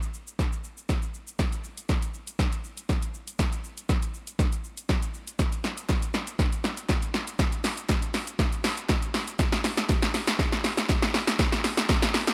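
Euphoric and upbeat, this short pop fragment at 120 BPM in a straight 4/4 is one continuous build-up and drum fill, driven by an up-front analog drum machine with a punchy kick and snare, hi-hat and shaker, its tape-warm tone re-recorded in a small room. At 5.9 seconds a very quiet group handclap joins, its hollow, human character adding an acoustic touch until 12.0 seconds, while a light reverb sits over the mix.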